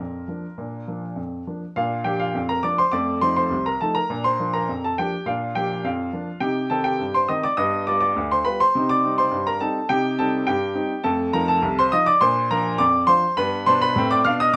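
Set in a straight 2/4 at 103 BPM, this short ragtime piano excerpt moves with a cheerful, jaunty step in Bb major. A lone upright piano carries the whole piece from start to finish, ranging from C2 up to F6. Its tone is woody and polished, with a long sustain, and it sits up front and present in the mix. Moderate studio reverb gives the room a light sense of space. After a brief opening passage, a new section begins at 1.8 seconds, and the harmony travels from Bb through F7, Cm and G7 before returning to Bb, landing on G7 just before the cut at 14.6 seconds.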